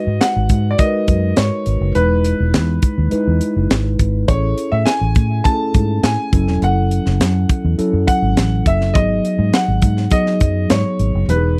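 A clear baby grand piano carries the melody from the opening, with audible action noise and long sustain, over a mellow tine electric piano that adds subtle chorus to its chords as they move from G#m7 through Emaj7, Amaj7 and F#m7. A dark, foam-muted fingered electric bass with a round, punchy tone and a tight funk drum kit with a high-tuned snare sit up front, giving this polished 1980s jazz-funk pop excerpt an urban, breezy feel. The dry, close studio sound carries only light reverb, and the drums drop out at 11.4 seconds while the other parts run to 11.6 seconds.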